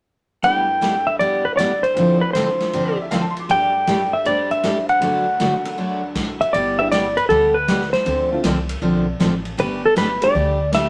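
Country western swing with a cheerful, down-home mood, this cut from a longer piece is led by an up-front, clean lap steel guitar playing the slide melody over a full-bodied picked acoustic guitar and a jangly, metallic tack piano. A distant, roomy big-band drum kit with dark cymbals and a punchy kick keeps the swing going, and a woody, thumpy pizzicato upright bass joins at 6.5 s as the second section begins. The chords move through G6, Dm7, Gsus2 and D in a wet studio reverb.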